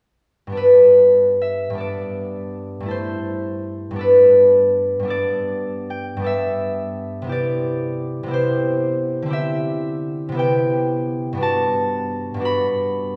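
A solo concert harp sounds from 0.5 seconds, fingerpicked and ringing, up front in a moderate concert-hall reverb, opening a graceful, dreamy classical passage in G major cut from a longer piece. The slow, rubato 6/8 moves at roughly 46-60 beats per minute in dotted quarters, drifting through Gadd9, Am7/G, G69 and Cmaj7 before resting on Gmaj9 at 11.4 seconds. Across its range from G2 to B5, the harp keeps an acoustic, unhurried glow.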